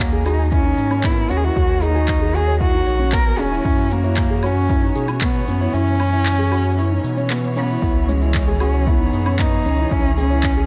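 A dark, nasal, woody cello carries the melody up front from the first second of this intimate, moving piano-and-strings electronica excerpt at 115 BPM in straight 4/4, over a felt-muted upright piano riff with audible action noise and delay, veiled con sordino string chords and a deep sine sub bass that both pump with the sidechain, soft round plucked arpeggios carrying chorus, 12-bit sampler grit and delay in the background, tape-toned electronic handclaps, shaker and woodblock, and a punchy overdriven kick that drops out from 5.7 to 7.8 seconds, all moving through D#m7, F#7sus4 and C#m7 in a dark, lightly reverberant studio production.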